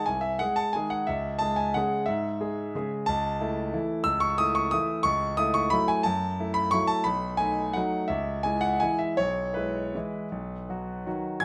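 Close, detailed microphones and a light reverb put a solo concert grand piano up front, its tone clear and natural, with a deep bass and long sustain. This graceful, playful classical waltz in C# minor is a short 11.4-second cut from a longer piece, tuned to A4 = 441 Hz. It moves in 3/4 with a rubato feel, the pulse drifting between 155 and 192 BPM. The piano plays alone throughout and spans from B1 up to G#6. The harmony opens on G#/B#, settles on C# minor at 1.1 s, then moves through A/C#, F#m7/C# and B7 before returning to C# minor and ending on E/B and B.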